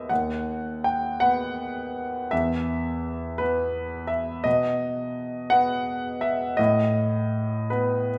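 Romantic classical nocturne for solo piano, this mournful, melancholic fragment of a longer piece drifts in a rubato 12/8 as an intimate, up-front grand piano with audible action noise moves from B/D# through E5 and an unharmonized moment to B7/A, ringing through a wet recital hall.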